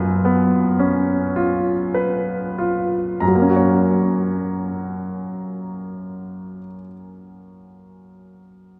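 A bright concert grand piano carries the melody from start to finish in this passionate, lyrical classical fragment, cut from a longer piece. Its tone is brilliant and polished, with a deep bass at the bottom of a range spanning F#2 to A#5, and it sits present and up front despite its short sustain. Set in F# major and 12/8 with a rubato feel, the music moves at a very slow 30-39 BPM in dotted quarters, and it slows down further over the opening phrase. A C#7 chord over an F# bass opens the passage, resolving to F# at 3.2 seconds as a second section begins and continues to 8.8 seconds. A wet cathedral reverb with a long 4.5-second tail surrounds the piano, lending each phrase a spacious, resonant halo.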